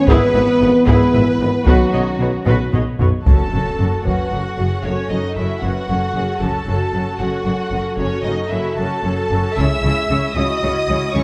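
Set in a moderate scoring-stage reverb, this dark, heroic cinematic cue moves at 76 BPM in a straight 6/8 in F# dorian, with close, hard-stick taiko driving beneath lush bowed strings: a distant violin section carries the vibrato-rich melody over a second violin line with soft attacks and smooth, even violas. Cellos and double basses anchor the bass with a focused, rich low end, joined by a very quiet, vintage-toned solo tuba and a dark, punchy trombone section that both fall away by about 3.1 seconds, while a warm French horn section holds tight sustained chords throughout. After a drum fill, a huge, bright impact sits in the background at 3.3 seconds as the harmony settles onto F#m, later shifting to C#m near 9.6 seconds.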